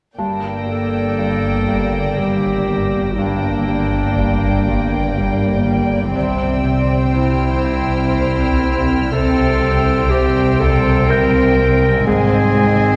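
Cinematic and mysterious, this ominous 3/4 excerpt in G dorian moves at 61 BPM, with a clear, distant clarinet carrying a second line alongside a rich violin section melody sung sul tasto with light vibrato, a dark violin section beneath it and another high above as faint texture, rich violas, pure, floating cellos and double basses, a mellow fingerpicked Celtic harp riff, a vintage concert grand piano with audible action noise that drops out at 6.2 seconds and returns at 11.1 seconds, and a swarming, detuned granular drone entering at 1.2 seconds, all set in a wet scoring-stage reverb as the chords pass from Gm to C to Ab.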